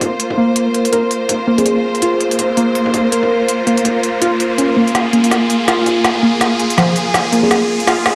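Bright, up-front strings open this cinematic, heavy half-time drum and bass excerpt at 164 BPM, holding sustained Bb chords with a vintage 12-bit sampler grit and an intense, bowed vibrato. An organic electronic kit plays alongside them, its woody snare, crisp hats and toms sounding tape-touched and re-recorded in a small room, with a swung, half-time feel. A warbly, dusty pluck runs arpeggios through subtle chorus and delay, its detuned square and sawtooth tones carrying a lo-fi noise layer, while a very quiet pulsing gated texture sustains a single Bb4 beneath. The whole passage is a build-up: a soft, hollow kalimba plucks brief Ab4 notes through a low-pass filter and delay at 1.6 and 7.4 seconds under a filter sweep, an electronic riser enters at 1.8 seconds, and a drum fill arrives at 5.0 seconds. A dark, echo-chamber reverb wraps the production in a heavy, atmospheric haze.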